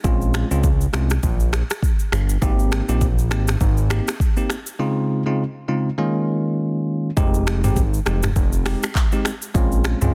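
A sultry, mellow afrobeats groove in F minor opens with the full band at once: a drum kit, a fat analog bass and a bell-like tine electric piano, cut from a longer piece and running at 101 BPM in 4/4 with a loose 16th-note swing. The produced electronic kit sits up front with a deep kick, metallic hats, a softly clipped snare, finger snaps, handclaps, rim clicks, shaker and toms. Alongside it, the thick bass blends nasal sawtooth and square-wave tones, detuned and shaped with a quick filter pluck and fast attack that then sustains up front as the groove's foundation. The electric piano rings bright, clean and direct over a progression moving from Bbm7 through Abmaj7 and Dbmaj7 to Eb7sus4. At 7.2 seconds a new section settles onto Fm7 before returning to Bbm7, all wrapped in digital ambience and a dense, heavily limited modern master.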